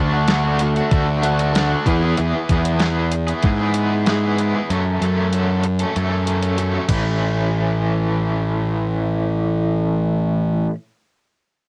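A dry, home-recorded cassette sound frames this carefree, jangly indie rock excerpt in A major at 95 BPM, where a bright, up-front overdriven guitar riff with tremolo runs throughout and a scooped second overdriven guitar with subtle chorus and analog delay plays alongside it only until 2.2 seconds. Underneath, a round, punchy fuzz bass holds the low end over a D, E, F#m, A progression. A detuned, tape-softened 8-bit drum machine with a thumpy kick, medium-tuned snare, hi-hat and ride enters at 0.3 seconds, drops its kick and snare from 4.7 seconds, and stops at 7.0 seconds.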